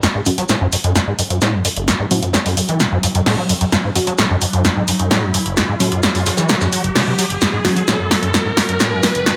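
A gritty mix in a moderate stone room frames this short cut from an industrial, intense peak-time techno track in a straight four. Up front, an overdriven acid bass riff squelches with a resonant, distorted sawtooth bite, its fast filter plucks decaying through chorus and digital delay. Beside it, a punchy analog drum machine drives overdriven hi-hat and snare that sound re-recorded in a large room, while a jazz brush drum kit adds hi-hat, shaker and a high-tuned snare in the background, its acoustic tone warm with a rolled-off top. Further back, a crisp, warbling wavetable chord stab with detuned unison voices and a moving notch echoes through digital delay. From 1.2 seconds, a very quiet swarming drone of detuned sine voices evolves with a tense, granular texture. The whole passage is a build-up: filter sweeps run across the bass and the stab, a drum fill carries through, and a background riser enters at 3.1 seconds.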